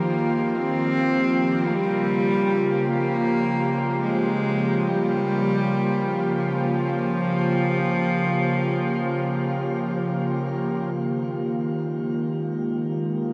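Floating in free time, this spacious, reflective ambient excerpt sets a rich, nasal cello melody with light vibrato, touched by shimmer reverb and diffuse delay, over an airy, breathy pad of sustained chords moving from F9sus4 to Gm7b5 and on to Fm11, which carries on after the cello stops at 9.8 s. Beneath them a very quiet, organ-like drone hums until 11.0 s, and the whole piece sits in a vast, echoing space with a huge, wet reverb.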